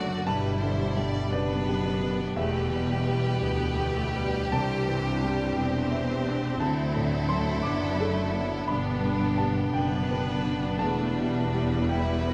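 This tender, moving cinematic excerpt opens with the whole orchestra already sounding, moving in a slow, rubato 6/8 at about 57 beats per minute. A clear chamber violin section carries the melody with intense vibrato, while a lush symphonic violin section sings a focused second line beneath it. Violas and cellos fill out the middle and low strings with rich, smooth-topped bowing, and a distant double bass section anchors the bass with light, even vibrato. A worn baby grand piano adds present accompaniment, a mellow French horn section holds vintage-toned sustained chords, and a concert harp rings out fingerpicked arpeggios, each sitting in the background. The harmony moves gently through G, Em, Cadd9 and D before returning to G and Em, and the close, detailed sound is set in a moderate scoring-stage reverb.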